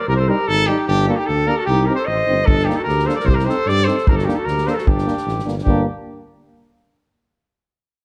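Balkan brass band folk in a bittersweet, virtuosic mood, this short cut from a longer piece sets a mellow, distant trumpet melody with a touch of slapback echo up front, alongside a clear, soft-attacked clarinet second line and a mellow tuba bass with light vibrato. Two euphoniums sit in the background as accompaniment, one clear and the other warm and smooth-topped, as the harmony sways between Cm and Gm. At 2.5 seconds an acoustic drum kit played with bundle sticks joins from a roomy studio space, adding a punchy kick and a medium-tuned snare under light reverb.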